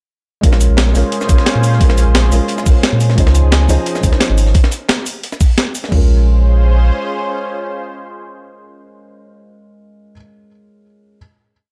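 Rolling and dreamy, this short liquid drum and bass piece opens at 0.4 seconds straight into a drop, with a felt-muted upright piano playing soft, mellow held chords with syncopated pushes, its action noise audible beneath vintage 12-bit sampler grit and a delay. A lush, detuned unison pad of sawtooth and square waves fades in slowly with sustained chords, bright under chorus and phaser and pumping against the sidechain. Up front, a deep sine-and-triangle sub bass with an added octave carries a dotted rhythm, thickened by tube saturation. Three layered drum kits drive the groove: an overdriven electronic garage kit with a knocking two-step kick, floor tom and crash; a compressed, sampler-style breakbeat kit with cabasa, hi-hats and a medium-tuned snare re-recorded in a large room; and a very quiet, crunchy acoustic breakbeat loop with a high-tuned snare and a rolled-off top. The drums drop out at 5.9 seconds, leaving a final chord in which the piano rings on until 11.2 seconds, all within a dark, warm production with little reverb.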